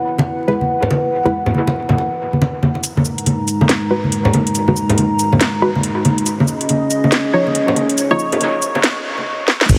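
Deep dubstep at 140 BPM in G# minor with a half-time, swung feel, brooding and heavy, where a dark, wave-folded analog pad with subtle chorus and echoing, hard-handed acoustic congas open alongside muted, detuned dub chord stabs over an E chord. A tape-warm garage kit with cracking snare and metallic, low-passed hats enters at 2.8 seconds as the stabs take on a filter sweep for a build-up over G#m7 and C#add9, ending in a drum fill at 9.5 seconds. A rumbling detuned saw bass and gritty, pitched-down kick hit only at 9.7 seconds, all steeped in huge ambient reverb, heavily compressed radio-like tone and vinyl crackle.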